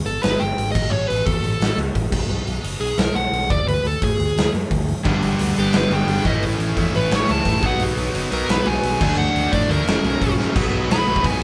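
A live-in-one-room punk rock excerpt with light reverb, energetic and rebellious at 174 BPM in a half-time feel, opens with a dark, overdriven lead guitar carrying the melody up front over bright picked electric bass and a big, punchy acoustic drum kit, before an overdriven rhythm guitar and a tight, distorted guitar join on riffs at 5.0 seconds, moving through G, A, B, D and F# toward a drum fill at 10.4 seconds.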